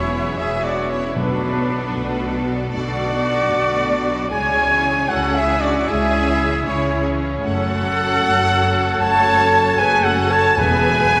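A cavernous church reverb bathes this triumphant, adventurous slice of epic orchestral film score, moving at a stately 77 BPM in 4/4 over a progression that opens and closes on Eadd9. A lush, focused violin section carries the melody with vibrato, joined by an airy silver flute and softer background violins on a second line. Violas, mellow French horns and a distant studio string section hold the harmony, while a solo trumpet punctuates with prominent stabs, cellos and double basses anchor the bass, and articulate, dry timpani strike with hard mallets at 1.2 s and again at 10.6 s.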